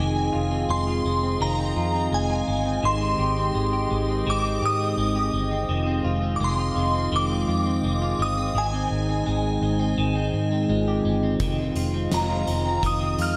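A shimmering FM bell carries the melody up front from the start, drifting through ensemble chorus, digital delay and slapback echo over a smooth, detuned analog pad, chorused clean picked guitar arpeggios and a round, foam-muted electric bass in this melancholic, hazy dream pop excerpt. A very quiet vibraphone with medium hard mallets adds dark, metallic ringing from 0.3 seconds as the harmony sways between Fm7 and Abmaj7. At 11.4 seconds an oversized low-tuned drum kit arrives with a fat snare, punchy kick and hi-hat, all bathed in a lush hall reverb that gives it a big arena sound.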